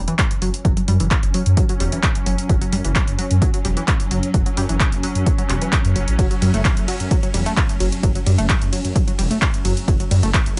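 Driving and intense, this short cut from a longer piece is peak-time techno at 130 BPM in a straight 4/4, built on an F#5 chord. A punchy, tape-warm electronic kick leads the mix, while an analog drum machine supplies handclaps, hi-hat and ride cymbal, with sidechain pumping on the hats and cymbals. Underneath, a dark detuned saw bass rumbles and beats between E1 and F#2, saturated and pumping against the kick, and a swarming drone of warbling, granular unison tones hovers with its own reverb and a tense, evolving character. A tight sequenced synth riff with a filter pluck sits between E3 and A3, colored by chorus, phaser, overdrive and tape echo, its tone mellow despite the drive. A barely audible electronic impact opens the passage in its first 0.6 seconds, and the whole sits in light reverb with the top end rolled off above 10.7 kHz.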